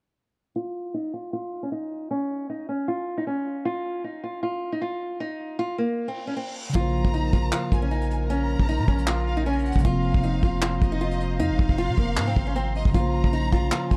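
A bright, fingerpicked nylon-string guitar carries the melody of this dark, hard-hitting trap excerpt in Bb minor, playing alone from 0.6 seconds through a low-pass filter sweep and delay until an electronic reverse cymbal leads into the full beat at 6.8 seconds. A mellow tine electric piano and a lush, distant violin section with vibrato enter at 6.7 seconds. At 6.8 seconds a soft brush kit with tight kick, hi-hat and handclaps, a deep sine 808 bass, and a detuned, warbling sawtooth pad with chorus in the background join them, all moving over Bbmadd9 and Fsus4 chords at 155 BPM in a half-time feel. Studio reverb gives the production a dark, warm sound.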